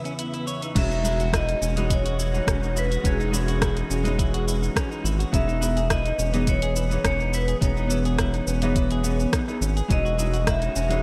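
This relaxed, sunny sunset chillout piece in E major at 105 BPM opens with a bright, ringing vibraphone melody with slow motor vibrato, fingerpicked nylon-string guitar roughened by 12-bit sampler grit, a silky, warbling string machine holding chords in the background, and clean electric guitar arpeggios, with diffuse ambient delay on the vibraphone and both guitars. An overdriven deep house kit of cabasa, hi-hat, rim click and crash cymbal comes in at 0.1 seconds, and at 0.8 seconds a round, deep analog bass with tube saturation sits up front beside a soft electronic kick, as the chords move between C#m9/E and Emaj13. The dreamy mix is soaked in lush hall reverb.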